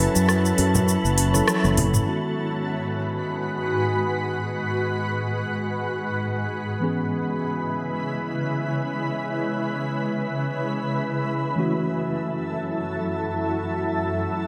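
This sunset chillout excerpt in free time opens with a mellow tine electric piano through digital delay, a shimmering, detuned ambient pad with chorus and an ethereal octave-up glow, a round, dark fretless bass up front and a faint, breathy wind-like noise texture; an electronic R&B kit of metallic hats, rim click, shaker and toms joins at 0.2 s, with very quiet, soft-handed congas following. Bass, drums and texture fall away by 2.1 s, leaving piano and pad floating over G#m7, C#m7 and F#m7 in a smooth, unhurried haze.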